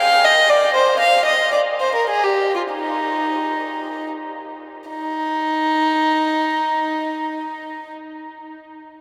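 A baroque-style classical suite movement for unaccompanied violin in Eb major and 3/4, radiant and serene, moving with a rubato feel between 75 and 121 BPM and slowing down from 0.2 to 4.9 seconds before a second section begins. A single period-style violin plays from 0.0 to 7.9 seconds, sitting close and up front with an airy bow and a nasal, reedy gut-string tone. The violin rings out in a vast, echoing space whose huge, wet reverb lingers for nearly eight seconds, and this fragment is cut from a longer piece.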